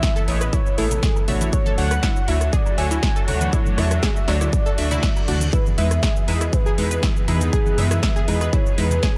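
A euphoric, expansive progressive house excerpt in which a velvety, chorused synth lead sings over background bowed strings, lush detuned pluck arpeggios, glossy retro polysynth stabs and a deep, rumbling saturated saw bass, all pumping against an up-front punchy kick, with metallic hats, cabasa, rim click and snare, a very quiet bright layer of woodblock and congas, and a reverse cymbal at 5.1 seconds as the chords move from Amaj7 through Dmaj7 to Emaj7.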